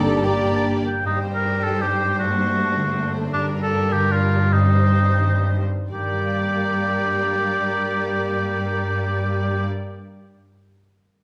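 This stormy, restless classical excerpt in G minor and 3/4 opens with the full orchestra at once. A lush, bowed violin section carries the melody, while a clear, up-front solo oboe traces a second line over a background violin line and an intense viola accompaniment. The opening chord also gathers a very quiet dark clarinet, a hollow, distant flute section, a mellow bassoon, a tight French horn section holding a sustained chord and a smooth double bass section on a low G, all of which fall away within the first second. Throughout, a focused cello section anchors the bass on G, and a ringing, thumb-plucked concert harp spins arpeggios in the background from the start until 10.2 s. The tempo ranges between 119 and 160 BPM and broadens from 2.8 to 5.9 s, while the harmony circles from G minor through C minor and D7 over a G pedal before returning to G minor, all set in a moderate recital hall reverb.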